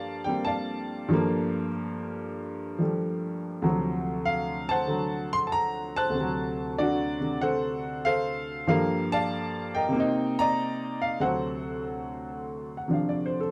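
Solo jazz piano in a moody, smoky vein, this short passage cut from a longer piece moves at an easy swing in 4/4. A clear upright piano carries everything on its own across the full 13.5 seconds, ranging from low bass notes up into the high treble. Its tone is woody and intimate, sitting present and up front, with the soft clatter of the action audible beneath the notes. The harmony circles through minor ninth chords and an altered dominant, returning to the home chord at 8.7 seconds before turning toward the dominant again. A moderate studio reverb and a dark, warm production give the instrument a small, late-night room around it.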